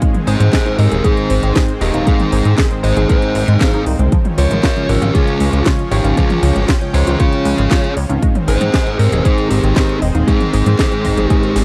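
Opening at once on a lush, warbling unison pad, chorused analog pluck arpeggios with tape echo, bell-like electric piano stabs through a phaser, a punchy, tape-warm electronic kick and a house kit of cracking snare, metallic hats, handclaps and toms, this sunny, danceable italo disco excerpt brings in a glossy, nasal chorused synth bass up front and a dark, fuzz-distorted lead guitar melody with tape echo at 0.3 s, set in a dry, close 1970s-style studio sound.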